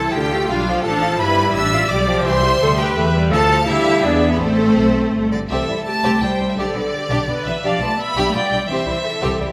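A lush, distant-sounding cello section carries the bass alongside a focused double bass section in this quick, restless classical-period movement for string orchestra, cut from a longer piece and moving at 169 BPM in 3/4. Above them, a smooth, even violin section sings the melody while a second violin line ranges from low to very high and a viola section fills in the accompaniment, all bowed with vibrato. The dramatic A minor opening turns to C major at 5.5 s, and a moderate scoring-stage reverb gives the ensemble a spacious sheen.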